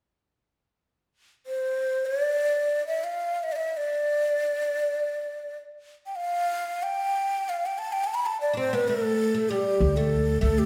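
Turkish music in free time, hypnotic and soulful, taken from a longer piece. A breathy ney carries the melody from 1.5 seconds, its reed-cane tone soft in attack, touched with vibrato and lifted in the highs, sitting up front. At 8.5 seconds an oud joins on a second line, its fretless double strings plucked with a plectrum for a woody, deep sound. An upright bass enters at 9.8 seconds, played pizzicato on steel strings with a growly, thumpy weight on a low D. The parts sit in a wet recital hall reverb that gives the sound the air of a church or concert hall.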